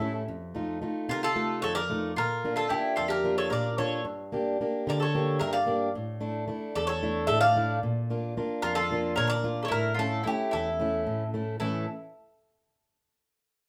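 Greek folk in a brooding, moody 7/8, cut from a longer piece, with an up-front metallic bouzouki, its double strings partly octave-doubled, carrying the picked melody over a round mandolin second line and a boxy, fingerpicked parlour steel-string guitar whose finger squeak comes through, all set in a wet studio reverb until the parts stop at about 11.8 seconds.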